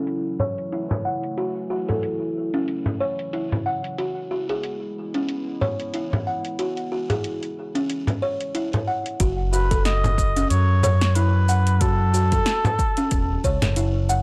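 Organic downtempo with a meditative, warm mood, built on a gently swung 4/4 groove that moves from F#m7 to E6 and back. A warbling, lo-fi pad holds dark, nostalgic chords with chorus, phaser and pumping, while a woody, buzzing kalimba plays short, up-front arpeggios through tape echo and a filter sweep during the opening. A bright, close frame drum struck with hard hands sits beside a deep house kit of metallic hats, shaker and punchy overdriven snare, its hats, percussion and snare all filtered. At 9.2 s the pad drops out as a deep overdriven electronic kick and a smooth, gliding synth bass with portamento, vibrato and tube saturation arrive, and at 9.5 s a cup-muted trumpet enters with a soft, veiled, jazz-style solo of scooped notes roughened by 12-bit sampler grit and tape echo. The whole piece sounds dry and gritty in a small room, with transformer saturation and a low-pass filter dulling its top end.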